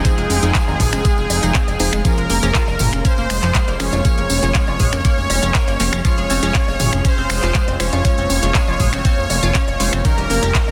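Progressive house with a dreamy, emotional mood, this short cut from a longer piece rides a straight four-on-the-floor pulse built on a knocking, tape-warmed electronic kick that sits up front. Beside it, a fat, thick analog bass with a detuned sawtooth bite pumps to the sidechain and anchors the chords as they move from Fm7 through Bbm7/F and Dbmaj7/F to Eb7/F. A smooth, detuned supersaw carries the melody with a soft attack and tape echo, while a muted, veiled string section bowed con sordino holds sustained chords in the background. Crystalline wavetable arpeggios shimmer through chorus, phaser and tape echo, joined by lush, punchy unison pluck stabs with a moving notch, and a calm texture of drifting glass harmonics arrives at 0.1 s with its own built-in reverb. A layered pop kit adds crisp hats, finger snaps, handclaps and a softly clipped snare, with a jingly tambourine arriving at 0.1 s and small-room electronic congas, bongos and toms entering at 0.3 s. 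Light digital ambience surrounds a dense, heavily limited modern master.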